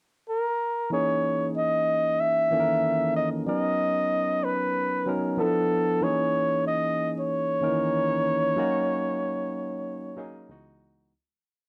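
This short, introspective R&B piece moves at 94 BPM in 4/4 with a smooth, swung sixteenth-note feel, set in C# dorian and tuned slightly high to A4 = 442 Hz. The flugelhorn enters at 0.3 s on a brief pickup and carries the solo melody in a jazz style, its soft attacks, scooped notes and vibrato shaping short, motif-based call phrases in a warm tone touched with slapback echo. From 0.9 s a bright, barky tine electric piano, lightly overdriven and direct, pushes the chord rhythm with rootless voicings and grace notes, moving through C#m69, Bmaj9, Dm69, D#m7 and a closing C#m11. Both parts sit up front in a small room with moderate ambience, inside a dark, warm production. The piece fades out from 8.6 s to its end at 11.1 s.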